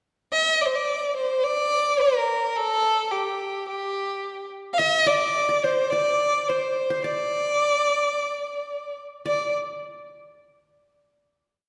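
A church-like hall surrounds this short, complete piece with a long, wet reverb that lets every note hang in the air. It is an Arabic maqam ensemble piece in D maqam bayati, moving at 107 BPM in a straight 4/4, with a melancholic, longing mood. A single bowed violin sits up front from 0.3 s, carrying a modal melody with ornaments in a warm, expressive voice, its vibrato and portamento giving the line a singing quality and a smooth top. At 4.8 s the qanun joins quieter beneath it, its fingerpicked triple strings bright-edged and acoustic as it plays the same line with its own ornaments. The two parts close together on a final note from 9.3 s that rings out into the hall's tail.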